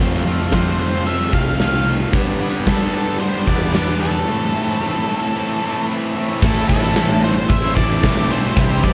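A huge arena drum kit, up front with a punchy kick and bright cymbals in a pumping hall, drives this gritty classic rock excerpt as a round, fuzz-laden overdriven bass holds down the low end and two cranked, crunchy electric guitars play riffs with slapback echo in the background, a very quiet picked steel-string acoustic with fresh strings adds accompaniment, and a dark octave-fuzz lead guitar with slapback echo carries the melody from 0.5 seconds, joined by a faint second octave-fuzz line at 6.5 seconds, the performance captured live through a club's PA with light reverb.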